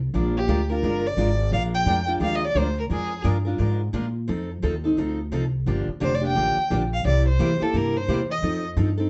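A rich, bowed violin with smooth vibrato and plate reverb sings two phrases, at 0.4 s and 6.0 s, over a bright picked steel-string acoustic guitar and a woody, thumpy gut-string upright bass in pizzicato, giving this playful, charming jazz manouche swing at 174 BPM a set-back feel, heard from further back inside a wet studio ambience with a softened top, as the harmony moves from Bb7 through F7, Gm7 and C7 back to F7.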